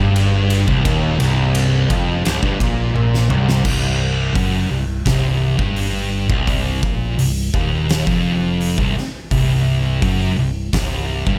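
Hypnotic and ominous, this stoner and doom metal passage, cut from a longer piece, crawls along at 85 BPM in a straight 4/4, rooted in C minor on a C minor chord. Two thick fuzz guitars, dark and picked, carry the heavy riff low in the register throughout, while a bright, double-tracked and compressed distorted electric guitar joins them only until 3.6 seconds. Beneath them, a fingered electric bass sits an octave lower with a growly, amped, overdriven tone. An oversized low-tuned drum kit enters at 0.2 seconds, up front with a punchy kick, a fat snare, toms, hi-hat, ride and crash, heard in a bright stone room with a pumping ambience. A drum fill from 3.0 to 3.7 seconds marks the move into the second section, where the fuzz guitars, bass and drums press on together in the studio space.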